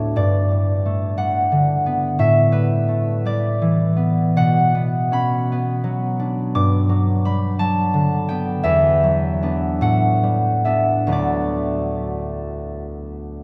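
Graceful and dreamy, this short classical excerpt features a solo concert harp moving in a lilting 6/8 with a free, rubato feel, its chords drifting from Gmaj7 through Bmadd9 and Em9 to settle on D6. The acoustic harp sits up front, fingerpicked and ringing across a broad span from D2 to D6, while a wet cathedral reverb with a 5.6-second decay places it in a vast, echoing space.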